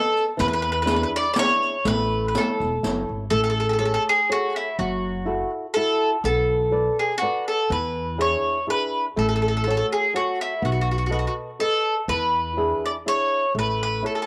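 A round, double-strung mandolin carries the melody up front in this wistful, passionate Italian folk serenade, a swung waltz-time fragment cut from a longer piece, its picked lines colored by cassette tape. Beneath it, a dark, boxy flamenco guitar with old strings is thumb-plucked through chords such as Amaj7, F#m7, Bm7 and E7, while a thumpy pizzicato upright bass on steel strings sits close, its tone edged with transformer saturation. A distant riq adds bright jingles only until 3.1 seconds, and a moderate spring reverb and small-room ambience give the whole home cassette recording an intimate feel.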